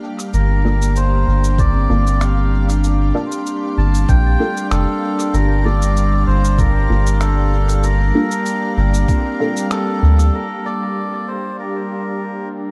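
Dark, dry production sets a meditative, deep ambient dub excerpt over a Gm7 chord, with a round, tube-saturated sub bass up front and a bright, detuned organ-like pad holding chorused, reverb-washed chords throughout. A reedy, breathy melodica carries the melody through dub echo, while a muted, phased chord stab with a cassette-tape tint and a mellow, ringing soft-mallet vibraphone arpeggio sit in the background, each echoing. Muffled, pitched-down cabasa and finger snaps and a thumpy, compressed kick from 1.6 seconds drive a lightly swung groove to a band accent at 9.7 seconds, after which a filter sweeps the pad from 10.3 seconds.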